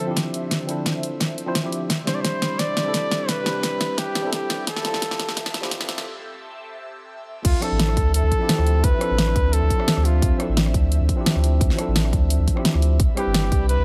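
A lightly reverberant, digitally ambient mix opens this rolling, melancholic liquid drum and bass excerpt at 173 BPM in D dorian, where a close-miked flugelhorn sings a classical-style melody with delay over a worn, slightly out-of-tune tine electric piano and a breathy, detuned pad with chorus, phaser and 12-bit sampler grit, while a punchy electronic kick and a pop kit with a fat snare build through a drum fill and filter sweep to a break at 6.1 seconds before a round, deep sine sub bass enters for the drop at 7.4 seconds.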